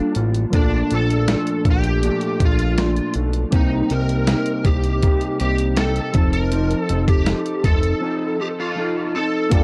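Lonely and mellow, this short bedroom-pop clip drifts over a Gm9, Bbmaj7, Cm7 and F7 progression, with an overdriven slide guitar carrying the melody through ensemble chorus and tape echo. A dark, clean electric guitar with analog chorus and warbly pitch drift adds accompaniment, and soft, airy electric-piano-like synth keys with a cassette-tape haze sit in the background, while a gritty, compressed, sampler-style drum kit with a thumpy kick and a fat, saturated analog bass sit up front. A break arrives at 8.0 seconds, and a very quiet, swirling phased pad surfaces at 9.5 seconds, all within a light reverb.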